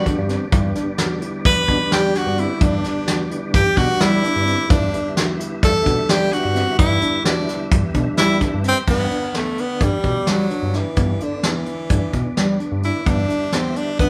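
A bright, jazz-style tenor saxophone opens this progressive instrumental from the first moment, playing an up-front solo over a tonewheel organ and a smooth synth bass, in G major and an uneven 9/8 at 258 BPM counted in eighths, with a straight, intricate and driving feel. The organ sits in the background with chorus vibrato and a fast rotary speaker, while the bass has a nasal, detuned edge, blending sawtooth, square and triangle tones with a fast attack, sustained notes and vibrato. At 0.1 seconds a tine electric piano joins with arpeggios, its worn and slightly out-of-tune sound kept clean and far back in the mix. A soft brush drum kit enters at the same moment, placed up front with a punchy kick, a medium-tuned snare, hi-hat and crash cymbal, all heard with a rolled-off top. The saxophone solo runs until 8.9 seconds, when the music moves into a new section. The band plays live in one large studio, with moderate reverb around the ensemble, and this excerpt is cut from a longer piece.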